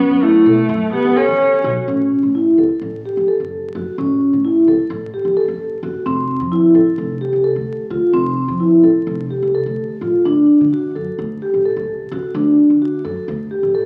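Crackling like a very old 78 rpm record and bathed in a recital-hall reverb, this excerpt of restless, playful contemporary chamber music moves in an uneven 9/8 with a straight feel. A rich, focused bowed viola sings a second line with vibrato only until 1.6 seconds, while a mellow, airy vibraphone played with soft mallets rings out metallic arpeggios up front with a medium motor vibrato. A woody pizzicato upright bass on steel strings sits low in the mix beneath chords moving from F#m to A, F and D.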